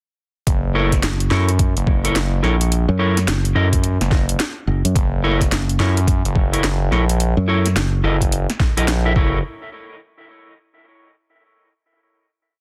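A saturated, aggressive synth bass drives this funky glitch hop piece at 107 BPM with a 16th-note swing, its sync-edged square and sawtooth tones chopped into phrases over an F#7#9 groove. A growly fingered electric bass sits up front beside it, answering the synth bass from 1.0 to 8.0 seconds, while an overdriven, thumpy broken kick and a layered kit with cracking snare and bright hats play a swung beat with edits. Dark, clean guitar stabs in rootless voicings pump against the beat with tape echo through a dry, dense, heavily limited mix that closes on a final hit at 9.4 seconds.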